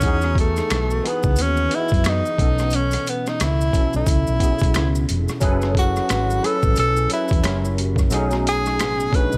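Late-night and introspective, this excerpt of swung neo-soul R&B at 89 BPM puts a breathy, vibrato-laden tenor saxophone up front, its soft-attack, scooped notes carrying the melody in a jazz style. Beneath it, a barky tine electric piano, lightly overdriven through a combo amp with ensemble chorus, accompanies through Emaj9, B7sus4, F#m11, F#7b9 and B13, while a round, dark hollow-body short-scale bass anchors the low end. A gritty, pitched-down boom bap sampler kit with a thumpy kick, hi-hat and rim click drives the groove, and close, dry maracas and finger snaps sit in the background, all in a dry room.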